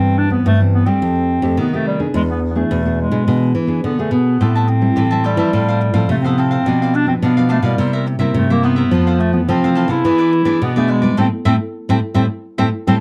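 Samba in A minor at 106 BPM, this bittersweet, nostalgic excerpt sets a soft-attack, roomy clarinet melody up front over two fingerpicked nylon-string guitars: a bright, fresh-stringed accompaniment and a full-bodied, deep classical bass line. A crisp, picked cavaquinho joins at 4.4 seconds, and the band lands a shared accent at 11.2 seconds on an Am7 chord. The sound is a dry, close 1970s-style studio recording with light reverb.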